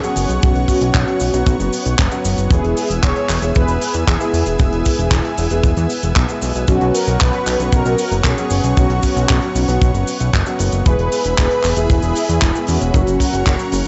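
A sunny, romantic italo disco excerpt opens with round, brassy synth brass carrying the melody through chorus, phaser and tape echo, over a lush, detuned unison pad of sustained chords, dark piano stabs sitting in the background, and a tight funk kit of cabasa, handclaps and hi-hat. A fat, thick analog bass arrives at 0.2 seconds, up front with a filter sweep and ring modulation, and a mid-forward acoustic kick follows at 0.4 seconds, as the chords move from Bsus2 to E and end on F#. The sound is dry and gritty, with little reverb and a dulled top end.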